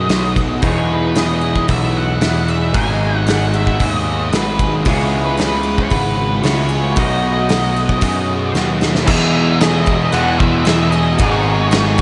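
Soaked in a huge ambient reverb with a dreamy sheen, this wistful shoegaze and dream pop excerpt moves at a straight 114 BPM in E major, drifting through B7, Emaj7, G#m7 and C#m7. A growly, overdriven fuzz bass and a punchy, up-front indie drum kit with dark cymbals anchor a haze of guitars: a shimmering, octave-doubled twelve-string plays arpeggios through chorus and delay, while a dark, thick fuzz guitar with chorus and a lo-fi, slightly broken-up small-amp guitar with reverse reverb play riffs in the background. An octave-fuzz lead guitar carries the melody through delay, and after a drum fill at 8.6 seconds a very quiet, double-tracked cranked stack guitar joins with a bright overdriven riff at 9.1 seconds.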